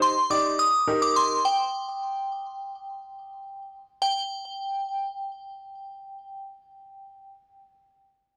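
A glassy, crystalline FM synth bell carries the melody up front in this melancholic, cool pop fragment, its fast-attack, decaying tones given a bright sheen by chorus, phaser and delay. A polished, present grand piano accompanies it in the middle register over a rootless C minor chord, then drops away at 1.4 seconds and leaves the bell on its own. At 4.0 seconds the harmony falls away as the passage moves into a new section, with the bell continuing through to the end of the cut. The whole take sits in a small, wet-sounding room and is blown out and overdriven, which gives the recording a harsh, saturated edge against the delicacy of the parts. Cut from a longer piece, it is a straight, even-metered glimpse of a larger song.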